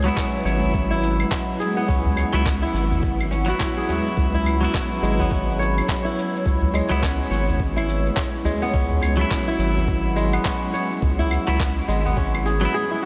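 A dreamy, reverb-soaked mix with a soft, rolled-off top frames this short excerpt of organic downtempo at 105 BPM, swung in 4/4 and resting on a single C#m7 chord with a warm, mystical mood. Up front, a bright, ringing kora plays fingerpicked arpeggios with tape echo over a deep, round analog bass that pumps against the gritty, thumpy sampler-style kick, while a clean, hollow-body semi-hollow electric guitar adds echoed, pumping accompaniment. In the background a cloudy, evolving granular pad sustains blurred chords, and a small udu joins at 0.6 seconds, after the tape-warm electronic shaker, handclaps and claves are already underway.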